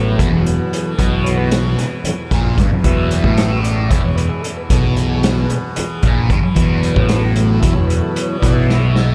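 In a straight 7/8 at 226 BPM counted in eighths, this hazy, trippy psychedelic rock excerpt holds on Esus2 while a mellow, key-clicking tonewheel organ solos through a slow rotary speaker over a thick, double-tracked fuzz guitar riff with phaser, a round, overdriven bass in the background, a softly plucked, buzzing, shimmering tanpura drone, and a vintage kit with a punchy kick and a rolled-off top that comes in at 0.2 seconds and plays a fill from 8.7 seconds, all set in light studio reverb.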